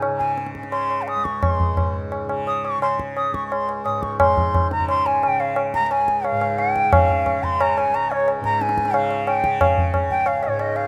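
Serene and meditative, this short cut from a longer Hindustani classical piece in raga yaman sets a bright bansuri, airy with vibrato and a crisp attack, up front over low-tuned, ringing tabla heard close and dry and a softly plucked, buzzing tanpura drone, all gradually speeding up under a moderate plate reverb in a rough home demo mix.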